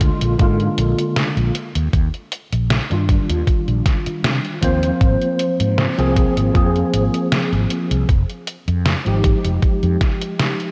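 Nostalgic and dreamy, this vaporwave excerpt at 78 BPM in Eb major sets a bright, up-front tine electric piano, coloured by ensemble chorus, delay and 12-bit sampler grit, over a dark, round fretless bass, a thumpy electronic kick and a detuned 8-bit drum machine's hi-hat and snare, the whole mix soaked in lush hall reverb and cassette tape haze as the chords drift from Bb7 through Ebmaj9 and Ab69 to Fm9.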